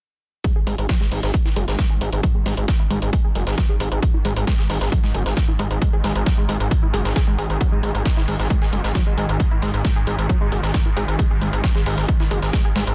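A straight 4/4 pulse at 134 BPM drives this industrial, peak-time techno excerpt, anchored by a heavy, overdriven electronic kick that sits up front with studio reverb. Layered metallic electronic hats share the top end with a sampler-style breakbeat kit whose gritty, tape-toned snare sits beside high-passed hats that pump against the kick. Underneath, a saturated, aggressive synth bass built on sawtooth and sine tones with oscillator sync and ring modulation pumps between F#1 and G#1 from 0.7 seconds. A tight sequenced synth riff, detuned and plucky yet mellow, runs from F#3 to G#4 through chorus, phaser, overdrive and tape echo, while a filter sweep on the arpeggio sound spans the whole passage. From 1.5 seconds a swarming, tense drone of detuned, wave-folded unison voices with granular texture and built-in reverb hovers in the background, and the dense, heavily limited master keeps the whole cut in a tense, relentless drive.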